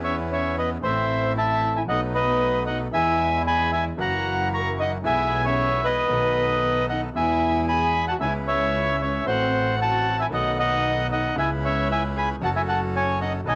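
A reedy, vintage-toned bandoneon carries the melody up front from the first moment of this sultry, melancholic tango excerpt at 114 BPM in E major, its rubato phrasing colored by cassette tape and plate reverb that also touch a brighter, close-miked second bandoneon playing stabs, a long-sustaining baby grand piano accompaniment, and a lush, smooth violin section that joins at 0.1 s in the background, while a clear, biting bowed double bass with light vibrato anchors the low end of this home cassette recording in a moderate room.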